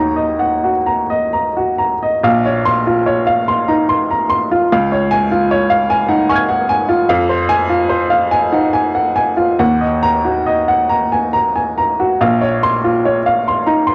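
A clear, woody upright piano plays alone from the start in this wistful, melancholic neoclassical minimalist fragment in Bb minor, moving in a rubato 3/4 at roughly 64-76 BPM and tuned to A4 = 441 Hz. After a brief opening on Ebm, a new passage begins at 2.2 s and moves through Bbmadd9, Db, Fm and back to Ebm and Bbmadd9, with the piano spanning Bb1 to Ab6. Its short-sustained, natural tone sits up front, set in a moderate spring reverb on a home cassette recording.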